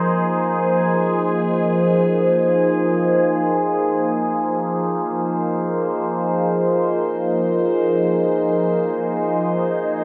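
An evolving wavetable pad opens this ambient fragment, holding a sustained F minor seventh chord in free time, with its tuning set slightly low at A4 = 439 Hz. Its detuned, warbling tone has a vintage, mellow character, swelling in on a slow attack and lingering on a long release, while a phaser and its own reverb keep the sound gently morphing up front in the mix. The mood is spacious and melancholic, the pad staying between F3 and C5 as the harmony rests on that single chord. At 8.5 seconds, muted, felt-like synth keys slip in with faint, decaying arpeggios, their dark, intimate timbre touched with chorus and barely audible beneath the pad. The whole recording is soaked in a cathedral-like reverb that gives it a dreamy quality until the fragment ends at 10.0 seconds.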